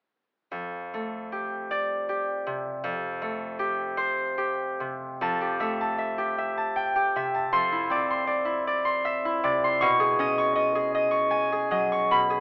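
Rubato, unevenly placed beats in 3/4 at around 78 BPM carry this peaceful, dreamy solo classical harp fragment in F lydian, tuned to A4 = 441 Hz, where a bright, ringing, fingerpicked concert harp sits up front from 0.5 to 12.4 seconds, ranging from F2 to C#6 over chords such as F69, Fmaj9 and B69, with a new section arriving at 5.2 seconds, all heard through light reverb and an AM-radio sound.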